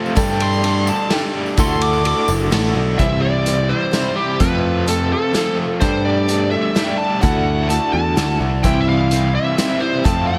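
Hopeful and nostalgic, this folk rock and heartland rock passage in 3/4 opens with a bluesy, distorted lead guitar solo over the first 3 seconds, carried by a boxy ladder-braced acoustic guitar with finger squeak and slapback echo, a dark, double-tracked overdriven electric riff with tremolo, a punchy, up-front picked bass, a vintage kit with a boomy kick and dark cymbals in a pumping small room, and a jingly tambourine that drops out at 2.4 seconds, all set in light reverb.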